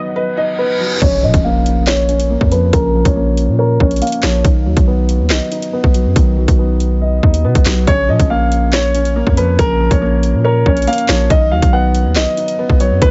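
Drill hip hop at 140 BPM in a half-time feel, this cold, ominous fragment in Bb phrygian opens on a very quiet ethereal pad, a soft felt-muted upright piano and a dark concert grand melody, both pianos filtered, while a reverse cymbal and impact lead into the full beat at 1.0 seconds. From there a deep, sine-toned 808 bass and an up-front electronic kit, with its hard-clipped kick, sharp snare, metallic hi-hats, handclaps and crash, drive under the two pianos as the harmony alternates between B and Bbm. A filter sweep runs until 7.9 seconds, when the grand piano's melody returns after a pause, all set in a digital ambience with a muffled top end.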